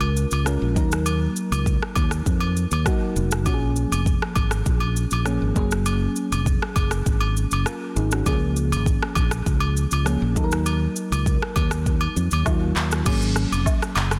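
Hypnotic and mellow, this afrobeats passage, cut from a longer piece, moves at 100 BPM in a straight 4/4. A soft, dark FM electric piano, coloured by chorus and phaser, comps through Db6, Ebm, Bbm7 and Gbadd9 before settling on Ab9sus4 at 13.1 seconds, over an up-front, round fingered electric bass. Acoustic agogo bells and woodblock ring in a small room, and an electronic afro-pop drum kit enters at 0.2 seconds with a deep kick, rim clicks, handclaps, shaker and crash cymbal, all within a digital ambience and a dense, heavily limited modern master.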